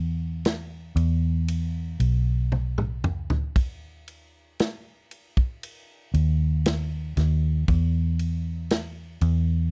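A dark, round, foam-muted electric bass opens this short excerpt of a heartbroken, melancholic pop ballad at 58 BPM in a straight 4/4, joined at 0.5 seconds by an acoustic country drum kit with a punchy kick, medium-tuned snare, ride cymbal and toms that plays a fill from 2.5 to 3.6 seconds, both parts up front in a dry, close 1970s-style studio sound.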